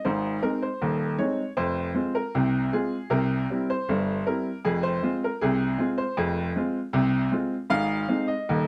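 Ragtime piano in 2/4 at 78 BPM, with a straight feel and a cheerful, lively mood. A bright upright piano plays alone for the full 8.7 seconds, covering a broad span from the deep bass to the upper middle of the keyboard. Its tone is brilliant and woody, with an open, up-front presence. The harmony moves from Ab through Fm and C, back to Fm, and returns to Ab at 7.7 seconds. Light reverb surrounds the instrument, and the overall production leans dark and warm, set against the sparkle of the piano itself. This short passage is cut from a longer piece.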